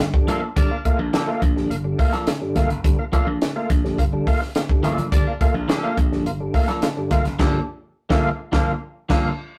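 A gritty, overdriven tonewheel organ with slow rotary speaker and chorus vibrato punches out stabs up front over a growly slap bass, a dry compact cocktail drum kit with a high-tuned snare and dark cymbals, and twangy, compressed clean electric guitar, while a tight, vintage horn section sits in the background from 0.6 s and returns at 5.1 s, giving this sly, funky snippet from a longer piece a rough rehearsal-room feel before a band accent at 7.4 s.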